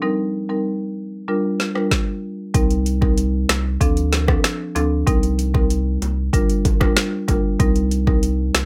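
An overdriven electronic afro-pop drum kit sits up front in this tough, hypnotic dancehall clip, its deep kick, woody snare, metallic hats, rim clicks and finger snaps carrying a small-room grit from 1.6 seconds onward. Before that, a dark, smooth marimba played with medium mallets opens alone, its padauk bars given a mellow, filtered tone as it accompanies the chords. A round sine sub bass enters at 2.5 seconds, deep and sustained with a fast attack. Tight, high-tuned acoustic bongos, struck with hard hands, join in the background at 3.0 seconds. The groove moves at 95 BPM in a straight 4/4 in C dorian, circling Cm7, Gm7 and Dm7. The sound is dry and close, and the clip is cut from a longer piece.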